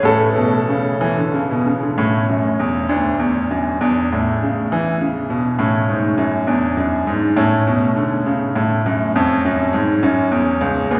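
A clear, open grand piano plays alone, up front and with long sustain, in this radiant, dance-like baroque-style classical suite movement in A major, swaying in a rubato 6/8 at 67 BPM by the dotted quarter and reaching from C#2 to A4, its chords moving from A through D and E7 before closing on F#5 at 10.0 seconds, all bathed in a cavernous cathedral reverb in this brief passage cut from a longer piece.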